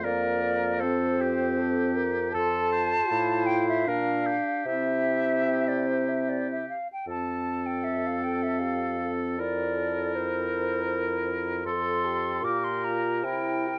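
Through worn, warbling cassette tape with light reverb, this serene, lyrical classical wind-quintet movement in a rubato three-time sways as a hollow, vibrato-tinged concert flute carries the melody over a softly attacked oboe second line, a mellow, distant clarinet and a background French horn in accompaniment, and a dark bassoon bass, all playing throughout this fragment cut from a longer piece.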